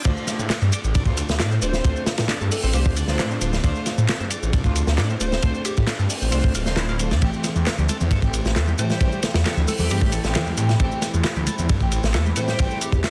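Breakbeat at 134 BPM in a straight 4/4, this raw, gritty passage sits entirely in a drop, moving from Dm7 to Am7 at 7.2 seconds. A crunchy acoustic breakbeat kit with a tight kick, medium-tuned snare and dark cymbals plays up front with a saturated, rolled-off top, alongside an electronic shaker and handclaps that carry a tape-warm analog character under low-pass filtering. A swirling, thick detuned saw bass with a phaser also sits up front, while a bright tonewheel organ riff with key click, light overdrive, slow rotary speaker and dub echo shouts from the background. Lush symphonic string stabs with vibrato and dub echo add weight, and a punchy, catchy plucky unison lead enters at 1.6 seconds with an old record sound and dub echo. A deep, moody ambient pad with chorus and a long release hums very quietly from 2.4 seconds, and damped, high-tuned congas join in the background at 7.6 seconds, all within a small room and a dense, heavily limited modern master.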